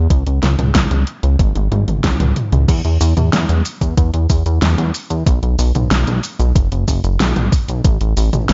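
A glossy, nasal chorused synth bass sits up front in this driving, cinematic synthwave excerpt at 93 BPM in a straight 4/4, its saturated pulse-and-sawtooth tone plucking low and pumping against the sidechain, tuned slightly flat to A4 = 435 Hz. An overdriven, thumpy electronic kick and a layered pop kit with a fat snare, warm hats, shaker, crash and toms, the kit bathed in gated reverb, drive it along. A drum fill from 1.4 to 2.7 seconds leads into a new section, all inside a digital ambience with a dulled top end.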